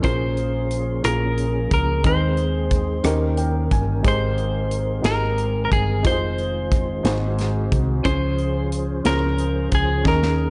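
A clean, compressed electric guitar carries the melody from the first moment over a woody, slightly detuned upright piano, a percussive tonewheel organ with key click, chorus vibrato and fast rotary speaker holding sustained chords, a round hollow-body electric bass and an up-front studio drum kit of hi-hat, punchy kick, rim click and snare, giving this slow 6/8 gospel passage a soulful, jubilant mood in a dark, small-room production, with a piano fill at 3.0 seconds and a drum fill at 10.1 seconds.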